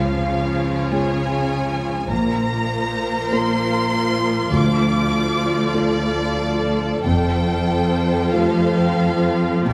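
A felt-muted upright piano, dark and intimate with audible action noise, carries the accompaniment in this tender, hopeful cinematic film score excerpt, drifting in a rubato 6/8 at 44-52 BPM in dotted quarters over Db, Bbsus2, Dm and Fadd9. One violin section sings the melody with light vibrato and a smooth top, while another shapes a second line with expressive portamento. A rich viola section fills the middle, cellos and a very quiet double bass section anchor the low end, and a very quiet concert harp adds ringing fingerpicked arpeggios, all held in a moderate scoring-stage reverb.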